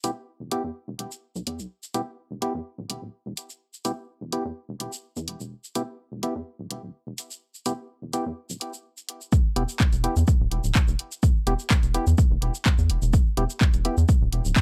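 Quirky and sparse, this minimal techno cut moves at 126 BPM in a straight 4/4, sitting in E minor over a single Em chord. A rubbery square bass carries the low end with a bouncy, wave-folded tone, its filter pluck and fast attack giving each note a resonant snap, while sidechain pumping makes it breathe against the beat. Above it, a percussive organ stab adds hollow, mellow hits treated with chorus and delay, and a house drum kit supplies handclaps, bright hats and shaker with a touch of overdrive. At 9.3 seconds the drop arrives as an overdriven electronic kick enters, punchy and up front, giving the groove its full weight. The sound is dry and close, with little reverb, and the piece is cut from a longer track.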